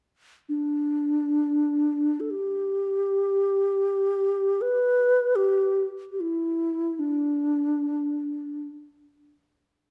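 A dark recording in a moderate recital-hall reverb frames this graceful, festive fragment of Chinese traditional music in free time and G gong mode, where an up-front, hollow bamboo xiao carries the melody from 0.5 to 8.7 seconds between D4 and B4 with a pure, mellow tone, soft attacks and vibrato.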